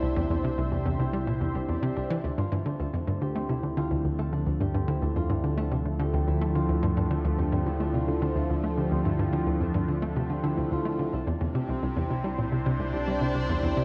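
A steady, straight 4/4 pulse at 108 BPM drives this short cut from a longer piece of sequencer-driven ambient space music in D minor, its mood mysterious and cosmic. A hollow, bouncy square-wave pluck sits up front with a riff in the low register, its fast attack and short decay edged with a noise layer, chorus and tape echo. Beside it, a lush, thick unison pad of detuned sawtooth and square waves holds bright sustained chords with a slow attack, treated with chorus and phaser. A thumb-plucked concert harp rings out arpeggios through tape echo, giving an acoustic glow, while a deep, round sine sub bass sustains underneath. The harmony moves from C to Dm7 at 2.2 seconds and back to C at 11.1 seconds, all set in a moderate plate reverb and coloured by the worn, warbling pitch drift of old cassette tape.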